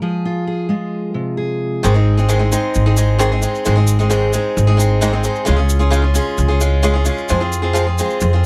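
A fingerpicked steel-string acoustic guitar with old strings and a woody tone opens this uplifting, nostalgic indie folk excerpt over an F minor chord. At 1.8 seconds the arrangement builds as a boxy, picked ladder-braced acoustic guitar, a growly pizzicato upright bass and a grainy, bright tube shaker join, with the harmony moving through Ab, Db and back to Fm, and the first guitar drops out at 3.7 seconds. The close, dry sound recalls a 1970s studio, with the guitars and bass up front and the bass sitting loudest.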